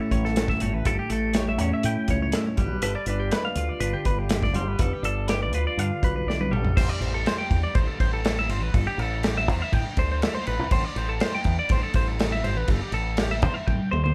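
Math rock and midwest emo, intricate and restless, cut from a longer piece with the band playing live in one room under light reverb. Two bright, clean, twangy twelve-string electric guitars share the space: one carries the accompaniment until 8.7 seconds, while the other spins high, compressed arpeggios over a growling, overdriven fingered electric bass that sits punchy and up front. A dark, smooth acoustic drum kit with a tight kick and rolled-off top plays throughout, with a fill leading into the shift from A7 and G7 to Am7 at 6.8 seconds.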